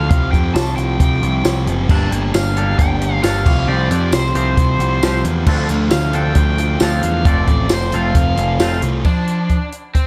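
An overdriven electric guitar carries a bright, compressed melody with delay from the opening moment, over a dark, thick fuzz guitar riff and a growling, overdriven picked bass that sits up front. This indie rock excerpt in F major moves at 134 BPM in a straight 4/4, upbeat yet wistful, with a compact cocktail drum kit entering at 0.1 seconds: a punchy kick, a high-tuned snare, dark cymbals, hi-hat and tambourine, all dry and natural near the front. At 1.9 seconds a clean, twangy electric guitar joins in the background with a second riff colored by analog chorus. The harmony cycles through Csus4, Gmadd9, Dm7 and F, giving the passage a hazy, unresolved lean. Plate reverb and small-room ambience soak the mix in a dreamy glow. The bass drops out at 9.0 seconds and the fuzz guitar follows at 9.5 seconds, after which the lead guitar and drums carry a brief chordless final stretch to the cut at 10.1 seconds.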